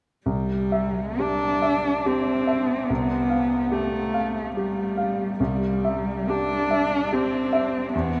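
A rich, bowed cello sings a lyrical, tender melody with vibrato, soft attacks and expressive portamento over a clear, smooth, vintage-toned grand piano in this romantic classical excerpt for cello and piano, moving at 70 BPM in a rubato 3/4 through C major harmonies that shift to G7/C at 2.9 seconds, both players up front within the huge, wet reverb of a vast, echoing space.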